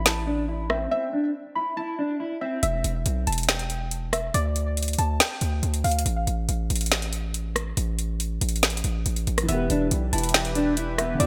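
A soft, round pluck and a distorted 808-style bass open this eerie, brooding trap excerpt. The trap drums enter almost at once in a half-time feel, with a woody snare, metallic hi-hats and rim clicks placed up front. The heavy, saturated bass hits hard and decays, holding the low end throughout. In the opening break, an electric guitar at the edge of break-up carries the melody through a filter sweep. Its dark, fingered tone is bathed in lush chorus and digital delay, while the harmony moves from A5 to Em and on to Dmadd11 before dropping out at 6.1 seconds. Around 9.5 seconds the guitar and pluck return over Em, now joined in the background by a mellow, boxy grand piano and a detuned sawtooth pad that evolves with a filter swell and slow attack, all set in a bright 1980s-style digital sheen with light reverb.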